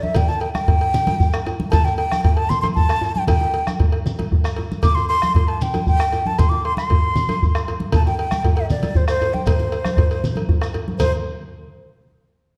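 A breathy concert flute sits up front with vibrato and tongued, expressive phrasing, carrying a C major pentatonic melody from C5 to D6 over a powerful, festive West African drum ensemble in 12/8 at 155 BPM that speeds up throughout. Beneath it, a round, close bombo anchors the groove while soft-handed, thick-skinned congas, a background djembe, a metallic cowbell and a grainy, band-limited shekere fill out the percussion. The dark production is bathed in a wet scoring stage reverb, and this excerpt is cut from a longer piece.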